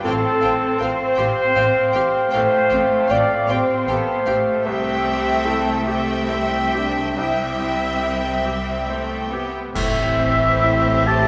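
This cinematic film-score excerpt opens with the full orchestra already sounding, led by a mellow, punchy French horn section up front holding sustained chords over a Fadd9/A harmony. Violins carry a bittersweet, longing melody with focused vibrato. A second violin line, a background clarinet and an airy wooden flute with crisp attack add supporting lines above. Beneath them, a brilliant grand piano with audible action noise and long sustain plays accompaniment alongside smooth violas, distant cellos and lush double basses that slide with portamento, with the harmony moving to C at 4.7 s. The tempo is slow and rubato in 6/8, around 44-54 BPM, and a wet scoring-stage reverb envelops the ensemble. At 9.7 s the harmony turns to Am7 on a band accent, as a roomy solo oboe enters and clash cymbals with concert bass drum add bright cymbal shimmer.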